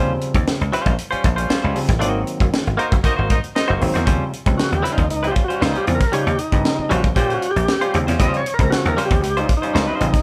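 Strutting, gritty funk at 116 BPM in Eb mixolydian, where a small-room drum kit with a high-tuned snare, a foam-muted slap bass, a twangy, compressed clean electric guitar and stringy overdriven auto-wah clav stabs set the groove; a vintage horn section in octave doubling punctuates briefly at 2.8 s, and from 4.6 s a thick, lightly overdriven tonewheel organ carries the melody through a slow rotary speaker, with the band playing live in one room under light reverb.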